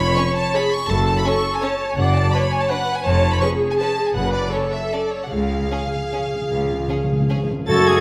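Bowed strings open this sweeping, bittersweet orchestral ballroom waltz, cut from a longer piece. A rich, close violin section carries the melody high above a dark, smooth viola section and a clear, distant cello section, while an expressive double bass section supplies the low foundation. A second, more intense violin section adds a supporting line just beneath the tune, and the strings move in three with a flexible, rubato feel and plenty of vibrato. Timpani, played with medium mallets and sounding dry, join at 4.2 s and later play a fill as the harmony settles on a C# chord. At 7.7 s the winds and brass arrive together: a hollow flute, a very quiet oboe, a soft-attacked, roomy clarinet and a bassoon in the background, with a tight trumpet section adding stabs, all set in a wet scoring-stage reverb.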